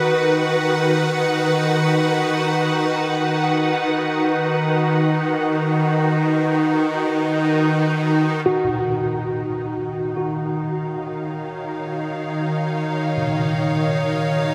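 Reflective and melancholic, this ambient fragment in free time opens on a bright, detuned wavetable pad that morphs through sustained chords with ensemble chorus and shimmer reverb, sitting up front above a very quiet, calm organ-like drone touched by phaser. At 8.5 s, as the harmony moves from B/D# to Ebm7, a worn, slightly out-of-tune tine electric piano enters with arpeggios on Gb4, trailed by diffuse ambient delay and shimmer. A wet cathedral reverb with a 6.6-second decay surrounds the sound.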